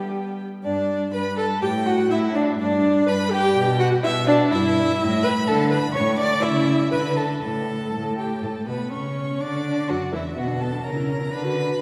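A lively, spirited classical-period string quartet movement at a quick 124 BPM in 2/4 opens with all four bowed players together: a rich first violin carries the melody over a vibrato-laden second violin line, an expressive viola with portamento fills the accompaniment, and an up-front cello anchors the bass, moving from G major to D major at 4.5 seconds before a new section begins at 8.4 seconds, all set in a reverberant concert hall heard from further back in the room, in a passage cut from a longer piece.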